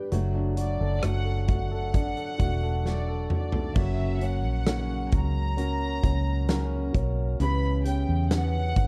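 Melancholic and emotional, this slow pop ballad moves at 66 BPM in a straight 4/4, cut from a longer piece and heard in a dry, close studio recording with a 1970s character. A concert grand piano with audible action noise and long sustain carries the accompaniment beside a fingerpicked, ladder-braced acoustic guitar whose old strings give its arpeggios a woody, boxy tone. Underneath, a foam-muted fingered electric bass sits round and up front, while a huge arena drum kit brings a fat snare, punchy kick, bright cymbals, rim clicks and toms. A violin section enters at 0.6 seconds with the melody, its reedy gut-string tone and light vibrato sounding distant in the mix. A drum fill from 2.9 to 3.8 seconds leads into the second section, as the harmony moves from D/F# to F# and then to C#m7b5.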